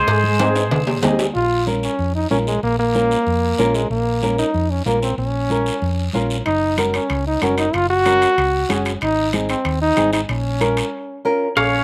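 Recorded outdoors with only a light reverb, this short cumbia cut from a longer piece sounds fiery and danceable, with the bright trombone and the twangy electric guitar placed up front. The clean, picked electric guitar, treated with spring reverb and slapback echo, states the melody at the opening, falls away, and returns briefly at the very end. A drum fill then leads into a long trombone solo from 1.4 seconds, its punchy, pop-style tone carrying a light vibrato and a smooth top. Beneath it, a thumb-plucked flamenco guitar with audible finger squeak and its own slapback echo plays the accompaniment, while a dark, round hollow-body electric bass gives a punchy low end. The percussion pairs raspy guiro with soft-handed, thick-skinned congas sitting in the background, and the ringing, saturated cowbell and timbales return at 6.5 seconds as the harmony moves from Bbm through Gb and Ab.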